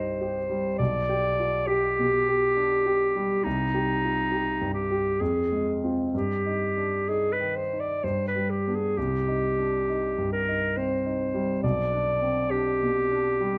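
A dark, vintage-toned recording sits both players up front in a moderate stone-room reverb. This yearning, elegiac romantic duo in three-time moves with a flexible rubato, as a clear, soft-attacked clarinet sings the melody above a smooth concert grand whose deep bass and warm tone carry the accompaniment. Both instruments play together from the opening through 13.6 seconds, in a passage drawn from a longer piece.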